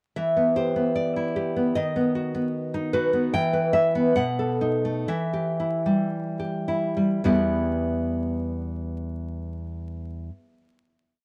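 A nylon-string guitar carries this short, melancholic romantic piece alone, its full-bodied, fingerpicked tone sitting up front as a single-line melody floats over inner broken chords in E minor. The rubato pulse in 2/4 moves between 52 and 78 BPM, slowing from 2.5 to 7.2 seconds as the harmony passes from Em through B/D# and B7 back to Em, before a final chord rings from 7.2 seconds. A wet spring reverb and vinyl crackle lend the wistful performance a vintage air.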